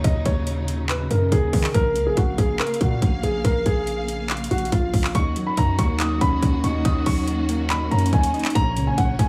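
Trap hip hop with an eerie, hard-hitting half-time feel, built on a dark, intimate baby grand piano melody with audible action noise, softened by a low-pass filter and tape echo, over distant bowed strings holding expressive chords with vibrato and portamento. Up-front electronic drums with a hard-clipped kick, metallic hi-hats and handclaps drive the groove alongside a punchy, heavy 808-style bass whose notes decay after a fast attack. At 5.1 seconds, detuned, warbling lo-fi synth keys with chorus join in, adding a nostalgic, mellow haze beneath the piano in a light, small-room ambience.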